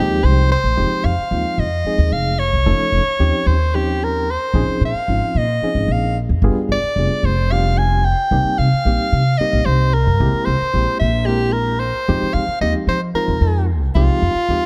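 Soprano saxophone, electric piano and upright bass start together in this nocturnal, driving electric jazz fusion excerpt in 7/8: the bright, punchy saxophone plays a forceful jazz solo with light vibrato up front, the reedy, barky electric piano accompanies with light overdrive and fast tremolo, and the woody, thumpy pizzicato bass on gut strings sits up front in a dusky production with light studio reverb, as the chords move from Fm9 through G7b9 and C7b13 back to Fm9.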